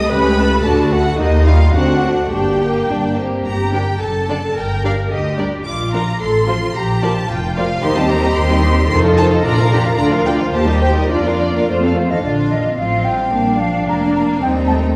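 Heard from further back in a reverberant scoring stage, this restless, dramatic fragment of a quick classical-period symphonic movement in 2/4 at 110 BPM moves from G minor into Bb major, with lush violins singing an expressive melody with portamento over a second violin line, smooth violas, even cellos and clear, focused double basses, while mellow French horns hold chords until 3.5 s, round, very quiet timpani sound briefly at 8.9 s, and an airy silver flute adds a second line from 12.0 s.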